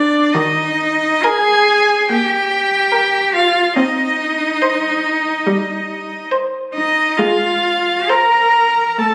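A short passage cut from a slow, serene romantic string quartet movement opens with all but the viola at once, a clear, smooth first violin singing the lyrical melody over a second violin's smooth, even inner line and a distant-sounding cello bass, before a rich, expressive viola with portamento joins at 0.3 seconds, the four bowed players shaded with vibrato and floating in rubato through a moderate recital-hall reverb as heard from a phone in the room.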